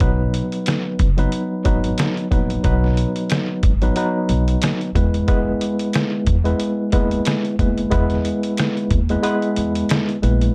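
Confident in mood, this boom-bap hip-hop excerpt at 91 BPM, with a light 16th-note swing, puts a worn, slightly out-of-tune tine electric piano up front, lightly overdriven and coloured by cassette tape, over woody pizzicato upright bass and a gritty, pitched-down sampler-style drum kit with a thumpy kick, medium-tuned snare, rim click and hi-hat, while a very quiet finger snap sits in a small room; the harmony moves from B to E at 5.0 seconds and the kick drops out at 9.2 seconds, all within a dark, lightly reverberant mix.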